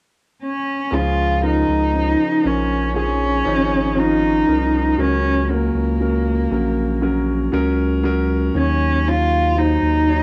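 A dark, woody cello enters alone at 0.4 s, a single bowed player singing the melody with vibrato through a cassette-tape haze in this slow, heartfelt and hopeful pop piece at 59 BPM in Db major. From 0.9 s a warm baby grand piano with long sustain and a deep, saturated sub bass join, carrying the harmony from Db to Gb and on to Ebm7. The parts sit in a modest booth ambience with the soft grain of a home cassette recording, and the passage is cut from a longer piece.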